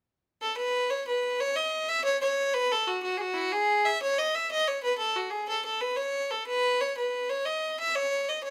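A lone fiddle, up front with an airy bow and a nasal, earthy tone, plays a rollicking, cheerful Celtic folk melody in a straight 9/8 from 0.4 to 8.5 seconds, set in light reverb in this brief cut from a longer piece.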